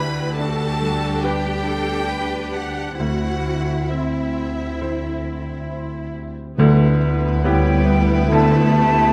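Set in a rubato 4/4 at 69 BPM, this cinematic, emotional film score excerpt feels moving and uplifting, its harmony resting on a D bass as it passes from G/D to C/D. From the start, a lush, expressive violin section carries the melody with vibrato and a soft attack, while a second violin section adds a focused, smooth-topped line, and a clear viola section accompanies in the background. Cellos play an even, smooth bass above double basses on a low D, as a bright, brilliant baby grand piano with short sustain accompanies and a ringing, fingerpicked concert harp plays arpeggios in the background. At 6.6 s the harmony turns to Em/D: a mellow clarinet enters with a second line, a distant, roomy French horn section holds sustained chords, and very quiet timpani with hard mallets and calf heads add an articulate touch. An airy flute section with a crisp attack and straight tone joins at 7.5 s with its own high second line. 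A moderate scoring-stage reverb surrounds close, detailed microphones, giving the ensemble a polished, spacious sound.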